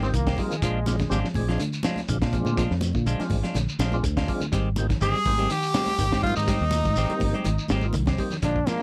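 Afrobeat excerpt at 123 BPM with a funky, driving sixteenth-note swing, cut from a longer piece and moving from Abmaj7 to Bb7, where a bright trombone section opens until 1.4 seconds over a fat, key-clicking tonewheel organ run through overdrive, chorus vibrato and a slow rotary speaker. A round, up-front fingered bass and a gritty, saturated breakbeat kit with a high-tuned snare and tight kick drive the groove alongside thick-skinned congas, a grainy shekere, a dark semi-hollow guitar playing arpeggios in the background and a twangy, scooped clean guitar playing stabs. At 5.0 seconds a raspy, edgy tenor saxophone takes the melody, seconded by a forceful, close-miked trumpet, and after a drum fill a brilliant solo trombone steps in at 8.4 seconds, all captured in a dry, close 1970s-style studio sound.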